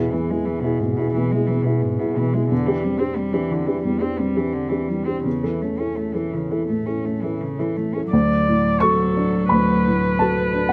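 Close, detailed microphones and light reverb give this neoclassical piece for piano and strings an intimate, tender feel. A dark, woody upright piano sits up front as accompaniment throughout, joined by a veiled, con sordino cello playing a second line with light vibrato and portamento. A single muted viola adds soft-attacked, bowed accompaniment from 8.1 s, as the rubato 4/4 harmony moves from chords over an E bass onto D6.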